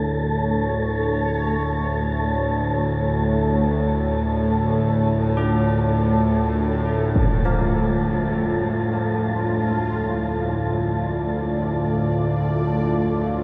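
A tense, string-like drone sits up front in this unsettling, desolate dark ambient piece, its low sawtooth tone carrying vibrato and a ring-modulated edge, with a slow attack and long release. Above it, a sweeping, resonant pad holds sustained chords, its detuned sawtooth body thickened with chorus and a sub octave, evolving through a filter swell while fading in. A breathy, wind-like tuned noise texture drifts across the upper register, mellow and airy, wrapped in its own reverb. At 5.4 seconds old church bells join in the background with bronze, clangorous arpeggios, their beating overtones trailing into delay as they fade in. A huge, dark, low-passed impact lands at 7.2 seconds as the harmony settles onto a minor chord, and the whole mix is drenched in a vast, long-tailed reverb in this section cut from a longer piece.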